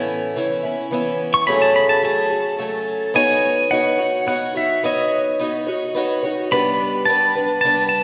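In a straight 3/4 rock lilt with a jangly, open-road mood, this excerpt sets a shimmering, octave-doubled picked twelve-string acoustic guitar with a boxy edge and audible finger squeak up front on chords moving from Aadd9 and F#madd9 to Badd9 and G, while a clean, compressed electric pedal steel guitar played with fingerpicks enters at 1.3 s with a bright slide melody and volume swells, the whole bathed in the long, wet reverb of a concert hall.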